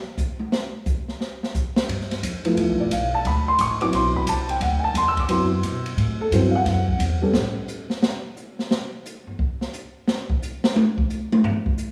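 The drum kit opens alone in this brief, relaxed small-group swing and bop passage at 176 BPM in D mixolydian, with hi-hat, ride cymbal, snare, toms and a boomy kick heard up front, the cymbals dark and the snare tuned high. At 1.9 seconds a woody, thumpy pizzicato upright bass enters on a G13 chord, and a dark, mellow upright piano follows at 2.5 seconds, its slightly detuned, vintage tone sitting close and smooth as the harmony moves to D13. The bass runs from G1 to B2 while the piano comping spans F3 to E6, both playing with a swung eighth-note feel. At 7.3 seconds the drums begin a closing solo as the bass trails off by 7.6 seconds, and the solo carries through to the end of this fragment of a longer piece. The sound combines small-room ambience with a lush, lingering scoring-stage reverb that gives the trio a warm, hall-like glow.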